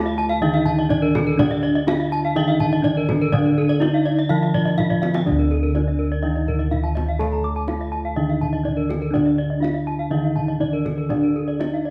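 Up-front, round bossed gongs anchor the bass of this shimmering, brilliant Balinese gamelan excerpt in D pelog at 124 BPM, beneath horn-mallet-struck bronze metallophones carrying a melody, a lower accompaniment and two airy arpeggio lines alive with paired-tuning beats, while a tight, vintage-toned kendang adds percussion and a short fill at 4.9 seconds, all set in a moderate recital hall reverb.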